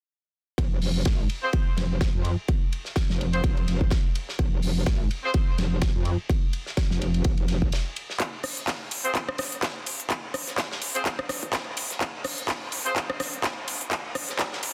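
Bass house at 126 BPM in F minor with a 16th-note swing, bouncy and gritty, where a metallic, saturated wobble bass pumps up front beside a punchy electronic kick and a dark-cymballed soul drum kit from 0.6 seconds, brilliant delayed horn stabs cut in, the bass stops for a break at 7.7 seconds, and a crisp, tape-tinged dance kit of handclaps, hi-hat and rim click drives the build-up and drum fill over an Fm chord from 8.2 seconds in a dense, heavily limited mix with light reverb.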